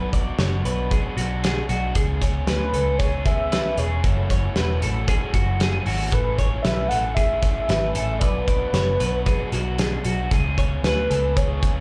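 Bright and breezy, this jangly indie pop passage, cut from a longer piece and heard as a live gig through the venue's PA with club reverb, moves at 115 BPM in a straight 4/4 over Bm, C#m7, F#m7 and Amaj7 chords. A velvety sawtooth-and-triangle synth lead carries the melody with chorus, vibrato and slapback echo. Beneath it, a twangy, compressed twelve-string electric guitar picks arpeggios through spring reverb, a raw overdriven garage guitar adds accompaniment, a dark, round foam-muted bass sits up front, and a loose drum kit with a fat snare, punchy kick and hi-hat joins at 0.1 s.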